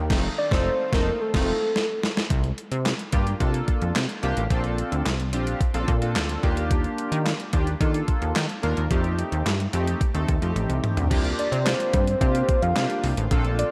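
Early-eighties boogie funk at 109 BPM in 4/4 with a straight, feel-good and smooth groove, heard here as a short cut from a longer piece that moves from F7 through C9sus4, Bbmaj7 and Ebmaj7. A clean 12-bit digital drum machine sits up front with a thumpy kick, medium-tuned snare, handclaps, hi-hat, toms and crash cymbal, its sampler-style hits given an overdriven edge, with drum fills around 1.2 and 10.6 seconds. Beside it, a plucky analog bass runs the whole way through, punchy and funky with a fast-attack filter pluck that decays, while a chorused polysynth supplies glossy, retro accompaniment with detuned sawtooth and pulse-width tones, a filter sweep and slapback echo. A very quiet, airy unison pad holds bright sustained chords only at the opening and again from 11.1 seconds. A soft octave-layered synth lead, heard briefly near the opening, returns at 11.4 seconds, round and dark with vibrato, chorus and slapback echo. 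The band hits an accent together at the start, and a moderate, lush hall reverb gives the whole mix a big arena sound.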